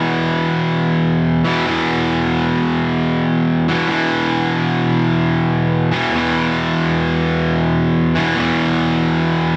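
A swung eighth-note feel drives this rock passage at 107 BPM in 4/4, giving it a swaggering, raunchy strut. A single cranked stack electric guitar carries the whole 9.6 seconds alone, picked and overdriven with a bright, double-tracked tone placed up front. It stays low in its register, between E2 and E3, built around an E5 power chord. The tuning sits slightly under standard pitch, with A4 at 437 Hz. The sound is of a band playing live in one room, wrapped in a moderate large-studio reverb that gives the guitar a roomy tail, and the clip is cut from a longer piece.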